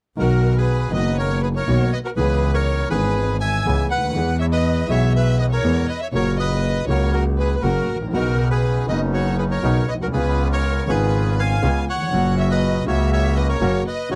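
Set at 121 BPM in 4/4 with a rubato feel, this short tango excerpt in B major moves with an elegant, playful air. A reedy, dark bandoneon carries the melody throughout, while a violin with a soft attack, vibrato and expressive portamento sings a second line from the background. A concert grand piano with deep bass and a slightly boxy tone supplies the accompaniment, and an up-front bowed double bass, biting and earthy with light vibrato, anchors the low end. From 8.1 seconds a second bandoneon, brilliant and mid-forward, adds stabs from the background. The harmony moves through Bmaj7, C#m7, E and F#, then Badd9 and C#7 before returning to F#, all captured in a dry, close 1970s-style studio sound with little reverb.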